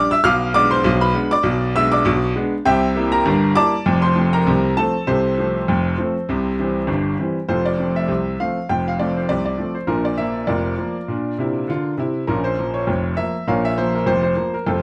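Ragtime piano in F major at 100 BPM in 2/4, cheerful and jaunty, with a light swing on the sixteenth notes in this short cut from a longer piece. A solo grand piano plays throughout, spanning F1 to F6, its clear, slightly boxy tone placed up front with audible action noise in a moderate studio room. The harmony moves from a diminished chord through C7 to F in the opening half, then shifts at 7.5 seconds to a second strain that travels from F to Bb and Bbm.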